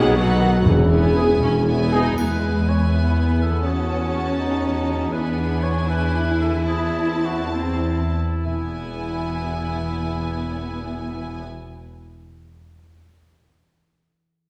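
Warm French horns, a bright clarinet, an airy flute and a punchy tuba open this stormy, dramatic excerpt of a Romantic orchestral movement in 6/8. Dark trumpet stabs, distant trombones and timpani join them briefly, and all of these fall away within about 2 seconds. That leaves a smooth violin melody over a second violin line, a mellow cor anglais, lush violas and double basses, cellos, a ringing harp and a brief dry triangle as the pulse slows between 4.4 and 8.4 seconds, set in a reverberant hall heard from further back.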